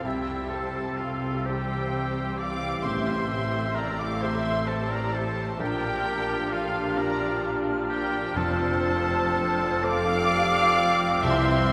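A violin section carries the melody high and smooth, its vibrato-rich tone floating over a tender, uplifting cinematic passage in F major, taken at a slow, rubato 43 beats per minute in a lilting 6/8. Beneath it a second violin section, a bright close-miked oboe, a distant, roomy clarinet and a pure, hollow flute weave supporting lines. The flute and the double basses enter at 0.1 seconds. A clear, focused viola section and a very quiet felt-muted upright piano, its action noise audible, provide accompaniment, while a mellow French horn section holds sustained chords in the background. Lush cello and double bass sections anchor the bass as the harmony moves from C through A minor and B-flat to F. A very quiet, dry timpani on F sounds with hard mallets from 8.4 to 9.8 seconds, and the ensemble sits in a deep cathedral reverb in this short excerpt of a longer piece.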